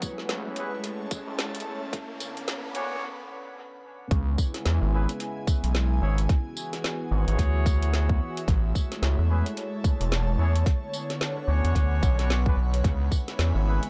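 A background riser, a tight, up-front electronic kick and a drum kit with a woody snare, metallic hats, rim click and tambourine open this swaggering, gritty glitch hop excerpt at 110 BPM with a swung 16th feel, over a warbling, nostalgic tape-like pad and an airy, breathy pad, both with sidechain pumping. A saturated, nasal, wave-folded synth bass comes in at 0.3 s, and a punchy vintage horn section enters at 0.6 s with stabs under a filter sweep through the build-up. A short break follows before the drop lands at 4.1 s. Dub echo trails the horns and drums in an echo-heavy mix with digital ambience, as the chords move through Amaj7, Bmadd9, C#m7 and Eadd9.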